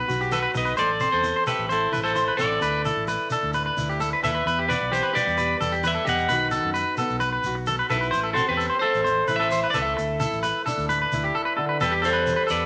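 A wet studio reverb gives this short clip from a longer piece a roomy, glowing sheen, with the two electric guitars sitting up front. It is a bittersweet, danceable highlife guitar band tune in a straight four, built on a cycling progression of B, Am, Dsus2 and Em. One electric guitar, twangy and fingered at the edge of break-up, carries the melody, while the second, equally warm and slightly broken-up, plays arpeggios. Beneath them, a fingerpicked, plugged-in acoustic guitar adds a boxy, swing-style accompaniment, and a fingered electric bass, round and punchy with an amped tone, holds down the low end. A grainy, band-limited shekere gives the groove a mellow, vintage rustle from 0.1 s to 12.6 s, just short of the clip's end at 12.7 s.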